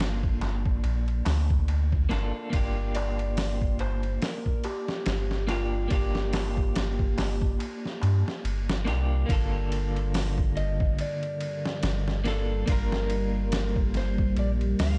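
A cinematic, hypnotic trip hop excerpt in G minor at 71 BPM opens with a gritty, pitched-down sampler drum kit with a thumpy kick up front, a round, soft dub sub bass with tube saturation, and a slightly broken-up electric guitar treated with tremolo, lo-fi sampler grit and tape echo, while a crisp metal-shell darbuka sits distant in the background. At 3.0 seconds a dark electric slide guitar, played with fingerpicks, carries the melody through dub echo and the same vintage grit over a swung 16th-note feel. At 9.3 seconds the darbuka drops out as a moody, detuned analog pad with chorus enters in the background, deepening the dark production.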